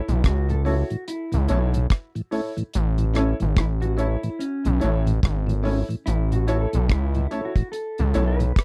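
A clean, dark electric guitar opens this short cut from a longer roots reggae piece, playing a fingered, compressed solo line touched with subtle chorus and tape echo. Almost at once a round tonewheel organ joins with vibrato, key click and a slow rotary speaker, alongside an acoustic drum kit built on a tight kick, hi-hat and rim click. Underneath, an aggressive, saturated synth bass with a sawtooth and sync edge and a plucked filter attack sits up front with the drums. From 0.6 seconds a woody, worn upright piano, slightly detuned, adds stabs over the single A chord that holds throughout. The mood is sunny and uplifting, with a relaxed swing on the sixteenths, all captured in a close, 1970s-style studio sound with little reverb.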